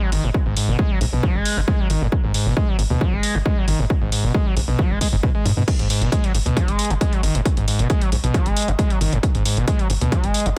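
Set in a digital ambience, this dark, relentless stretch of driving peak-time techno in G# minor runs at 135 BPM and is cut from a longer piece. A squelchy, resonant acid riff, distorted and bright with chorus, delay, a filter sweep and sidechain pumping, screams up front. Beneath it sit a tight sawtooth-and-square sequencer bass with ring modulation, a plucked filter and its own pumping, an analog drum machine whose crash cymbal and hi-hats pump in a large room, and a layered, tape-warm heavy kick that hits up front from 0.3 seconds.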